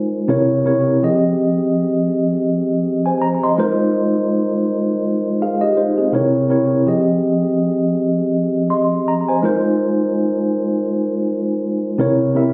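Captured on a phone in a booth-like room with club reverb, this smooth, warm R&B fragment at 82 BPM in Ab major features a mellow, clean tine electric piano playing solo up front through its built-in speakers, with slapback echo over a swung sixteenth feel as it cycles through C7b9, Fm9 and Ab6.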